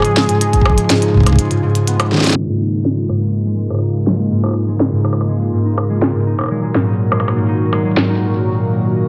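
A straight 4/4 pulse at 123 BPM drives this melancholic, cerebral IDM fragment, cut from a longer piece. An up-front glitchy drum kit ticks away with clicky hats, a tiny snare and percussion blips, all dulled by a low-pass filter, while a deep electronic kick joins at 0.5 seconds and then briefly drops out. Above this, a velvety sawtooth synth lead with vibrato and a sub octave sings a short melody through chorus, delay and shimmer reverb before falling silent at 1.9 seconds. A hollow, flute-like pad with a soft attack holds detuned, chorused chords, and a ringing, fingerpicked concert harp spins arpeggios; both are bathed in shimmer reverb. The harmony moves from C# to A#m7 and then to D#m, and from 2.4 seconds a filter sweep shapes the low-passed harp within a light digital ambience.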